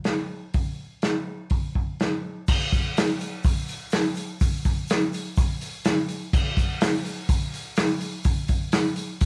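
A dry sound with little reverb frames this driving, confident rock passage at 125 BPM in a straight 4/4, cut from a longer piece played live by a band in one room. Up front, a vintage acoustic drum kit with a lo-fi, muffled tone carries the beat with a punchy kick, a medium-tuned snare, hi-hat and crash cymbals that sound dark, and a rolled-off top end. At 2.5 s a very quiet egg shaker joins, adding a grainy, bright edge beneath the kit.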